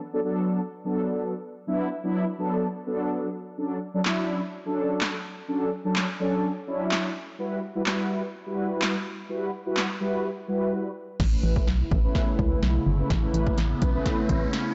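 Dance-pop at 126 BPM in a straight 4/4, energetic and confident, cut from a longer piece. A mellow synth brass part opens alone, round and detuned with a chorus sheen and sidechain pumping, carrying chords that move from Bm7 through Dmaj7 to Emadd9. At 4.1 seconds a deep house drum kit enters up front, with a punchy kick and snare, smooth hats, handclaps and crash cymbal. After a short break, a build-up begins at 11.2 seconds on Aadd9, where a hollow, organ-like FM bass arrives with a dark, percussive bite and a drum fill runs through to the end. An airy, breathy pad with a slow attack and chorus joins underneath, and an electronic riser sits in the background over the final seconds. The whole mix is blown-out and overdriven, with light reverb, digital ambience and a dulled top end.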